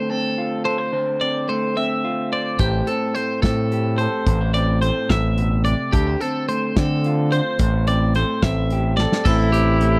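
Set in a rolling 6/8 with a straight feel, this wistful, intricate slice of math rock and midwest emo, cut from a longer piece, alternates between Dm7 and Am7 chords. It opens with two guitars: an electric guitar through a small old amp plays picked, slightly broken-up accompaniment, while a twangy, compressed twelve-string electric guitar spins clean, bright arpeggios up high. At 2.6 seconds a growling fingered electric bass arrives with punchy overdrive, joined by a loose indie drum kit with dark cymbals, a medium-tuned snare and a tight kick. The drums play a fill at 9.0 seconds, and a breathy trumpet enters at 9.3 seconds, offering a whispered, intimate melody note with vibrato, a soft attack and slapback echo. The sound is dry and close, like a 1970s-style studio, with a small room reverb around the up-front instruments.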